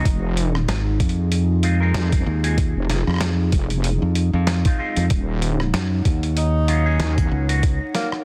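Enveloped, picked guitar stabs with 12-bit sampler grit, sidechain pumping and dub echo open this short, playful, funky glitch hop cut at 95 BPM with a 16th-note swing, over a heavy, detuned wobble bass with chorus and an up-front, tube-saturated fingered electric bass that joins at 0.7 seconds. Gritty, pitched-down boom bap hi-hat, rim click and snare sit beside a thumpy, tape-warm electronic kick, while a moody, dark analog pad with chorus, phaser and pumping sustains Fm7 and then Ebm7 in the background. A tenor saxophone with dub echo takes a brief solo melody from 6.4 seconds, all in a dry, dense, heavily limited mix dusted with vinyl crackle.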